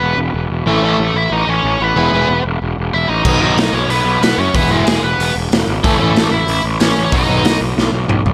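Punk rock at 186 BPM in E major with a half-time, upbeat energy, this short cut opens with a biting, overdriven lead guitar carrying the melody over a growly, fuzz-soaked picked bass, both up front, the lead touched with delay. From 0.7 seconds a bright, hollow-bodied semi-hollow guitar and a sludgy distorted guitar sitting in the background pick through an E, A and B riff. A raw garage drum kit with a punchy kick, gritty saturated tone, rolled-off top and pumping small-room sound crashes in at 3.2 seconds and closes on a drum fill at 7.8 seconds, all in a dry mix.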